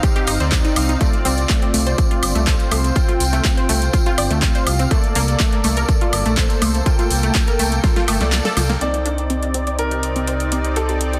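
Progressive house at 123 BPM in C dorian, this bittersweet, expansive passage is cut from a longer piece and moves through Cmadd9, Dm7 and Bbmaj7 in a straight 4/4. A lush, detuned unison pluck spins arpeggios through cassette-tape grit and delay, while a smooth supersaw adds filtered stabs, both breathing with sidechain pumping, and a dark, rumbling detuned saw bass sits up front from 0.3 seconds. The punchy, overdriven electronic kick drives the groove until 7.9 seconds, joined by a pop kit of handclaps, fat snare, metallic hi-hat and woodblock, plus a jingly, distant tambourine that stops at 8.8 seconds. A drum fill, a brief kick dropout and a band accent lead into the second section at 8.8 seconds, where filter sweeps run on the pluck and supersaw and a brilliant, intimate baby grand piano enters with a short delayed melody, its action noise audible. From 9.4 seconds an evolving wavetable pad with phaser and built-in reverb morphs quietly in the background. 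The master is dense and heavily limited, set in light reverb.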